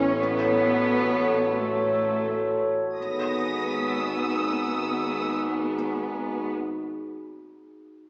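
Glassy, ethereal glass harmonica chords float over a focused cello section and smooth, distant double basses in this tense, ominous suspense film score cut in free time, with a lush, bowed violin section entering high above from 3.0 to 5.3 seconds as the harmony shifts from F#m/A to G#m7 in a reverberant concert hall.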